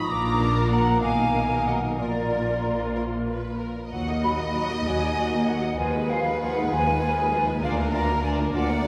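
A playful, whimsical cinematic film cue in Eb minor with a quirky, sneaky mood, moving at 64 BPM in 6/8 with uneven beats, cut from a longer piece. A violin section carries the melody, while an airy, hollow flute section with lifted highs sings the loudest line on top, and a second, expressive violin section plays close and soft-edged beneath it, over distant bowed violas, smooth cellos and a rich, focused double bass section. A mellow French horn section holds sustained chords until 3.6 seconds, a very quiet thumb-plucked harp rings out arpeggios throughout, and a wet church reverb with a 3.2-second tail bathes the ensemble.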